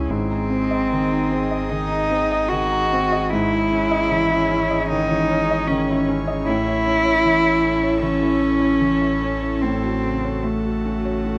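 A veiled, con sordino cello sits up front, its dark bowed line carrying vibrato and portamento over a felt-muted upright piano whose mellow, intimate accompaniment runs through the whole 11.4 seconds of this reflective, longing neoclassical passage at a rubato 75 BPM in 4/4. Behind them, an airy, breathy pad with chorus holds slow-attack sustained chords, while a soft, round dub sub bass anchors the low end. The harmony moves from G# through C#madd9/G# and A to F#m/A, all set in light reverb and small-room ambience.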